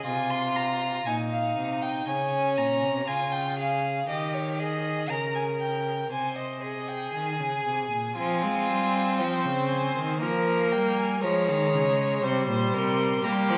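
A steady, straight 4/4 pulse at 59 BPM carries this solemn, serious baroque-style fugue for string quartet, heard as an excerpt cut from a longer piece. A dark-toned violin sings the bowed melody with smooth vibrato above a clear, focused second violin, while a rich, up-front cello holds the bass line. The viola adds an even, bowed accompaniment from 8.2 s, where the music settles into F minor, all framed by a moderate scoring-stage reverb and a vinyl crackle.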